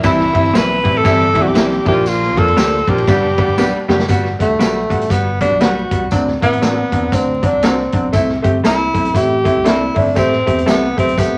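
Uptempo 1960s-style soul in G major at 118 BPM, this joyful, uplifting excerpt moves with a swung 4/4 feel, its tuning sitting slightly below standard pitch. A clear tenor saxophone carries the melody up front with light vibrato and scooped notes, then takes a jazz-style solo from 4.1 seconds to the end as the harmony shifts to Gmaj7, D7, C6 and Am7. Underneath, a bright, woody upright piano, slightly detuned with audible action noise, supplies accompaniment, while a punchy, amped picked electric bass holds the low end. A gritty, saturated vintage drum kit with dark cymbals and a punchy kick drives the groove, marking the turn into the solo with a fill around 3.6 seconds, and a jingly tambourine sits in the background. A very quiet, compressed clean electric guitar adds picked stabs, and a lush, distant bowed violin section with a soft attack and vibrato plays a second line only until 4.1 seconds. 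Moderate studio reverb and vinyl crackle give the whole a vintage record character.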